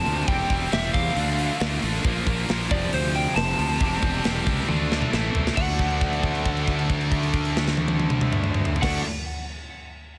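Heavy and menacing, this hard rock excerpt in D minor at 136 BPM drives a growly fuzz bass and a tight, up-front metal drum kit beneath three bright, picked rhythm guitars riffing in the background (one overdriven, one double-tracked high-gain, one scooped), while a slightly broken-up lead guitar carries the melody through tape echo over a very quiet tonewheel organ holding chords through a slow rotary speaker, with a drum fill at 4.7 seconds leading into a held note from 5.6 seconds in a dense, heavily limited small-room mix.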